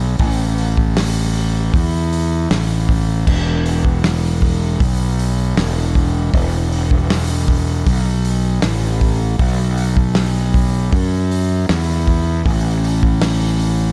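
A fuzz-laden fingered electric bass opens this short cut from a longer shoegaze and dream pop rock piece, moving between E1 and F#2 with an overdriven, amped growl that sits up front. A loose indie drum kit joins at 0.2 seconds, its crash cymbal, hi-hat, kick drum and snare drum captured acoustically in a small room. The kit has a tight kick, a medium-tuned snare and a rolled-off top, and it sits slightly behind the bass in level. At 78 BPM in a straight 4/4, the groove feels unhurried, and the mood is hazy and blissful. The sound is dry, with little reverb, so both parts come across close and immediate through the roughly fourteen-second passage.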